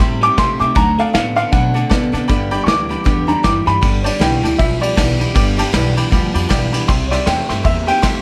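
A swung 4/4 rockabilly groove at 157 BPM drives this upbeat, retro excerpt, with a vintage brush kit that is smooth and up front over a thumpy, woody pizzicato upright bass on gut strings. A dark, mellow upright piano carries the melody from 0.2 s and takes a solo until 3.8 s, when the G major harmony turns mixolydian, then adds a honky-tonk fill around 5.7 s. Beneath it sit a twangy, slightly broken-up electric guitar riff through a small old amp with phaser, a jangly, metallic tack piano and a full-bodied picked dreadnought acoustic guitar in the background, all in light reverb.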